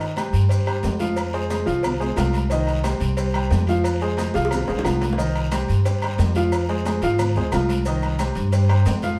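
Salsa at 180 BPM in 4/4, this driving, danceable passage in C minor is cut from a longer piece and alternates between Cm and Fm chords throughout. A clear baby grand piano with short sustain sits up front, playing accompaniment from Eb3 to F5 across the full 9.2 seconds, while a woody, thumpy upright bass on gut strings plucks pizzicato between Bb1 and Ab2, entering at 0.3 seconds and standing as the loudest part. Ringing agogo bells and metal-shelled timbales share a small-room sound, joined further back by high-tuned, band-limited congas and tight, vintage cowbell and bongos struck with hard hands. A raspy, saturated guiro and grainy, mellow maracas in a live room fill out the percussion layer. A drum fill arrives at 4.3 seconds, and the whole mix carries a wet studio reverb that places the listener further back in the room.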